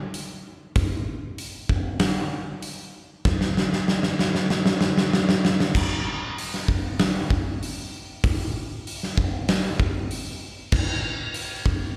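Rock at 96 BPM in a straight 4/4, this brooding, cathartic cut from a longer piece features only a big acoustic rock drum kit, dark and smooth with a punchy kick, medium-tuned snare, hi-hat and crash cymbal sitting up front, entering at 0.1 seconds, moving through a fill from 3.3 to 5.8 seconds into a second section, and heard live through a venue's PA in a wet club reverb.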